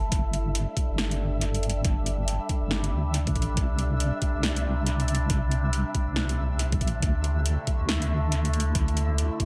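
A deep, soft wobble bass sits up front in this brooding, meditative slice of deep dubstep, its dark sawtooth-and-sine tone detuned and thickened with chorus, moving between G1 and D2 over a half-time 4/4 groove at 139 BPM with a 61% swing on the sixteenths. Above and around it, an overtone-sweeping drone holds sustained chords from C3 to A4, its slow-attack, resonant voice blurred by chorus, phaser and its own reverb, passing through G5, C and D5 harmony at 0.1, 3.6 and 7.0 seconds. An overdriven electronic kick drum knocks near the front, joined by a deep house kit whose punchy snare and metallic hi-hats carry overdrive and dub echo and sound re-recorded in a large room. Far in the background, a flickering, grainy texture of detuned triangle tone hovers on E5 with a long release and built-in reverb. The mix is dry overall yet heavy with echo, and this cut from a longer piece holds a single section throughout.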